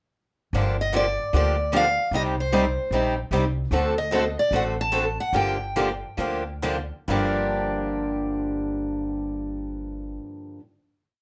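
A four-to-the-bar rhythm guitar, short and accented on two and four, drives this fiery, swinging acoustic string swing piece in G minor at 130-152 BPM, joined by a fresh-stringed second rhythm guitar and a woody, growly upright bass playing two-beat root and fifth with walk-ups, while a bright picked lead guitar with audible finger squeak spins motif-based period phrases until 6.6 s, the tempo slowing from 3.7 s before a final chord rings from 7.1 s in a moderate club reverb.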